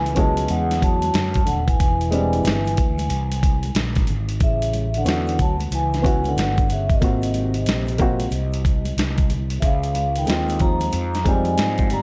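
A smooth, warm jazz-hop excerpt at 92 BPM with a swung 16th feel opens on soft-mallet vibraphone carrying a ringing melody with slow motor vibrato, over a veiled, bucket-muted trombone second line with scooped notes, a dark, woody upright piano and a growly fretless electric bass. From 0.1 seconds a gritty, compressed sampler-style drum kit with a thumpy kick sits up front, re-recorded in a large room, while close, dry tube shaker and congas stay in the background. The harmony opens on A6 and E7alt, then after 4.4 seconds moves from A6 through G#13 to C#maj9.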